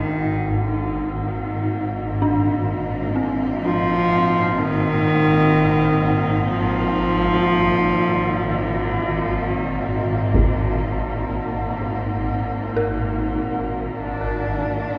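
A dark, reedy solo cello with a gut-string tone carries the melody up front, bowed in period style with tape echo, until it stops at 9.4 s in this cavernous dark ambient drone. Beneath it, a swarming, detuned drone with a granular, wave-folded sine-and-triangle body sits close and tense, while a distant bowed chamber cello section fades in on sustained, vibrato-rich chords and an eerie, inharmonic FM synth bell plays chorused arpeggios in the background. At 10.3 s a compressed, saturated taiko ensemble strikes briefly through a low-pass filter and tape echo, all bathed in a wet spring reverb and an echo-heavy mix.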